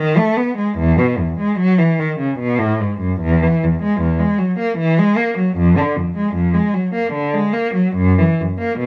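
Serene and dance-like, this short excerpt from a baroque-style suite movement for unaccompanied cello moves in a flexible, rubato 3/4 at around 76 BPM in E major, tuned to A4 = 439 Hz. A single bowed cello plays alone from 0.0 to 8.9 seconds, ranging from E2 to B3 with a rich, expressive tone, vibrato and gliding portamento, sitting up front yet carrying a distant quality. Close, detailed microphones and little reverb keep every nuance of the bow clear and intimate.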